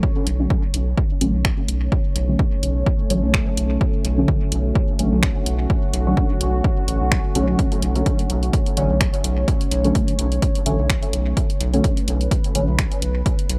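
A dry, gritty hardware recording with little room sound frames this short, nocturnal and hazy slice of dub techno, cut from a longer piece and moving at 127 BPM in 4/4 with a light 16th-note swing. A punchy, overdriven electronic kick sits up front, joined at 0.3 seconds by a deep house kit of finger snaps and hi-hat, also overdriven and thrown into dub echo. The round analog bass enters at the same moment, low and sustained with tube saturation and sidechain pumping. Above it, a soft, warbling chord stab with a vintage character decays through chorus, phaser and dub echo, while a detuned, moody pad with a sub octave and slow attack holds long sustained chords, bathed in its own reverb and also pumping to the sidechain. The whole passage rests on a single Bm9 chord in B minor, the stab falling away at 12.7 seconds as the pad, bass and drum kit carry on to the close.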